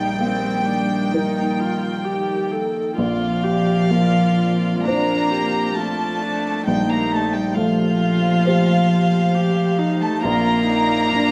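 Tender and hopeful, this brief neoclassical fragment for piano and strings moves at a slow, rubato pace in four, cut from a longer piece. A dark chamber violin section carries the melody between F5 and Bb5, bowed sul tasto with light vibrato, a soft attack and a smooth top. Beneath it, a single cello plays a second line with an airy bow and gentle glow, while one rich-toned viola adds accompaniment in the middle register. A mellow, woody upright piano spans from deep bass to the treble, and a chamber string section holds sustained chords in the background. The harmony rests on a Bb pedal, moving from Eb/Bb to Bbadd9 at 3.0 seconds and Fadd9/Bb at 6.7 seconds, all set in the moderate reverb of a recital hall.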